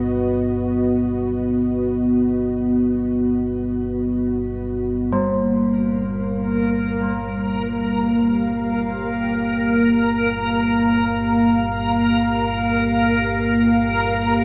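A sweeping, resonant pad of detuned sawtooth chords with a sub octave and filter swell sits up front in this vast, ominous dark ambient drone in free time, tuned to A4 = 441 Hz, its harmony shifting from B to Gm7 at 5.1 seconds. Beneath it, a deep, rumbling drone carries phaser and lush chorus, while a ringing bronze gamelan-type metallophone, struck with a wooden mallet, plays arpeggios on G3 from 5.1 to 12.6 seconds through diffuse delay and shimmer reverb. From 6.4 seconds, a dreamy, reversed granular texture swells on Bb4, and a huge, wet reverb with a 7.3-second tail gives this excerpt from a longer piece its cavernous depth.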